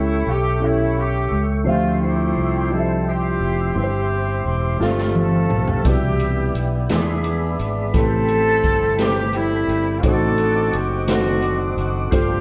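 A warm horn section carries the melody with light vibrato over a dark, boxy grand piano, a soft, flute-like tonewheel organ holding sustained chords through a slow rotary speaker and chorus vibrato, and a growly, punchy fingered electric bass, until a smooth big-band drum kit with a rolled-off top enters with a fill at 4.8 seconds in this hopeful, uplifting slow gospel excerpt in 6/8 at 57 BPM, moving through chords such as A7, Dm11 and Cmaj9 under moderate reverb from a band playing live in one room.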